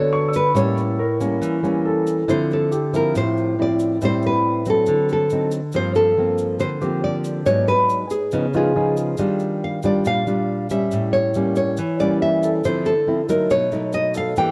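This short cut from a longer bossa nova piece sounds worn and warbly, like old cassette tape with a drifting pitch, set in a light reverb. At 139 BPM in a straight 4/4, two up-front nylon-string guitars carry a wistful, melancholic mood. One fingerpicks the melody between G#4 and G5, with audible finger squeak, while the other thumb-plucks a full-bodied accompaniment from G2 to A4. A clear, natural baby grand piano accompanies higher up, dropping out at 9.4 seconds and returning at 12.4 seconds, and a grainy, bright tube shaker sits far back, compressed and saturated. The harmony drifts through jazzy colours such as Gmaj9, A7b9, Dm9, Gm11, C#9 and Ebmaj9 before landing on B7.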